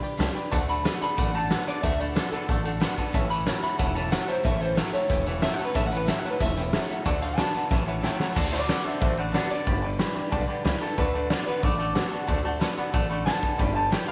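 A straight 4/4 beat from a raw garage drum kit with a fat snare and punchy kick drives this rollicking, upbeat rockabilly excerpt, where thumpy pizzicato upright bass and a background bed of clear, woody upright piano, bright picked steel-string acoustic guitar and a compressed, twangy electric guitar riff with tremolo support a slightly broken-up lead electric guitar through a small old amp, with spring reverb and tape echo, which carries the melody throughout, while a drum fill at 7.7 seconds leads into a clean electric guitar solo from 8.4 seconds.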